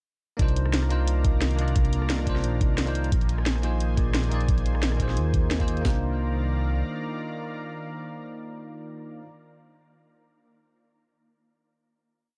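A rolling, lush liquid drum and bass piece in C minor at 176 BPM opens straight into a drop at 0.4 s, pairing a gritty, compressed breakbeat kit of thumpy kick and high-tuned snare with a produced electronic kit of closed hats, rim clicks and a cracking snare in a two-step groove, beneath a deep, rumbling detuned saw bass with long gliding notes. Above them, a bell-like, barky tine electric piano plays syncopated chord stabs through chorus and digital delay, while a thick, warbling unison pad with vintage 12-bit sampler grit pumps against the sidechain as the harmony moves from Cm11 to Bb9sus4 and back. The drums fall away near 5.9 s and the bass at 6.8 s, leaving the keys and pad to sustain a final Cm11 chord in a dark, dry mix.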